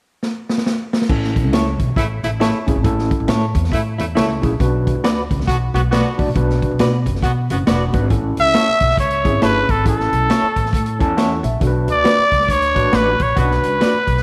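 Joyful and uplifting, this short cut from an uptempo 1960s-style soul piece in A major swings along at 137 BPM. A drum fill on the big-band kit opens it at 0.2 s, and at 1.1 s the woody, thumpy upright bass, barky overdriven tine electric piano with tremolo and quiet high-tuned congas come in, followed by dark clean electric guitar stabs at 1.5 s and a punchy horn section playing a second line at 2.0 s. At 8.4 s a raspy, growling trumpet takes the melody up front over a moderate plate reverb, and an electric piano fill and a closing band accent follow.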